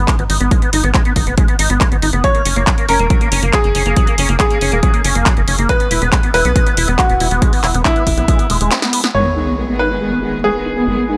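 A straight 4/4 pulse at 139 BPM drives this soaring, euphoric uplifting trance passage in G# minor: a punchy, up-front electronic kick and a layered big-room kit of handclaps, low-pass filtered hi-hat and snare sit beneath a tight sawtooth sequencer bass and a squelchy, resonant acid arpeggio, both pumping against the beat, with chorus and digital delay on the arpeggio. A brilliant baby grand piano with audible action noise enters at 2.2 seconds with a second line through delay as the chords move from G#m to F# and E, and the kick drops away at 8.4 seconds before a drum fill leads into a band accent. At 9.1 seconds a sub-drop impact lands, soft-attack, distant chamber strings enter with sustained chords as the harmony returns to G#m, and a filter sweep moves across the acid line, all in a dry, close sound.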